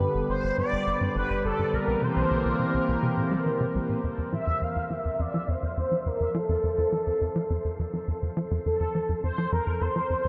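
Expansive and luminous, this excerpt of ambient, sequencer-driven space music moves at 104 BPM in a straight 4/4, shifting from C major to F major at 4.0 s as the chords pass from G through C7 to F. A tight, punchy sequencer bass drives a dark, plucky riff with lush chorus and tape echo beneath a swirling, nasal analog pad treated with phaser and chorus, while an expressive, smooth synth lead enters at 0.3 s with a vibrato-tinged melody carried up front by ensemble chorus and tape echo. From 5.2 s a very quiet, breathy wind-like noise texture joins, and the whole dreamy mix is soaked in a huge reverb with an 8.7-second tail.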